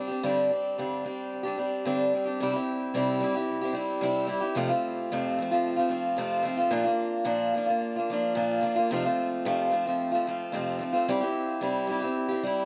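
Open-road and warm, this short rock excerpt at 111 BPM in C mixolydian, tuned slightly flat of standard, features a solo picked acoustic archtop guitar, boxy and up front with analog delay, ranging from F2 to G4 over a chord movement from Gsus4 through C, F and Bb before settling back on C at 11.1 seconds, all in a light reverb.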